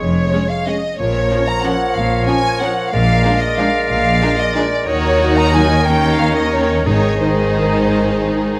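Elegant and festive, this brief orchestral excerpt in a flexible, rubato triple metre sets a close, expressive violin section on the melody with vibrato and portamento, while a second group of violins, a clear oboe, an airy, hollow silver flute and a smooth clarinet trace supporting lines. Violas in the background, a warm, softly attacked bassoon and a mellow French horn section holding sustained chords fill out the middle, and lush cellos with focused double basses give a rich foundation. Timpani with medium mallets sound briefly from 6.9 s as the harmony arrives on Ab, all set in a moderate recital-hall reverb captured with close, detailed microphones.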